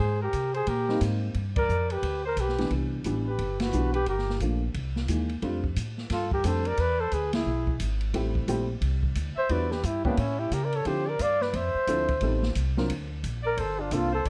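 A swinging 4/4 pulse at 177 BPM drives this sophisticated small-group swing and bop excerpt, where a breathy, mellow flugelhorn carries the melody up front with scooped notes and light vibrato over a clear, punchy trumpet second line, a woody, thumpy pizzicato upright bass, an open drum kit with dark cymbals and a boomy kick, and an intimate baby grand piano with audible action noise entering at 0.9 s, with band accents hitting at 1.5 s and 3.6 s before the harmony settles into F major at 5.4 s under light reverb.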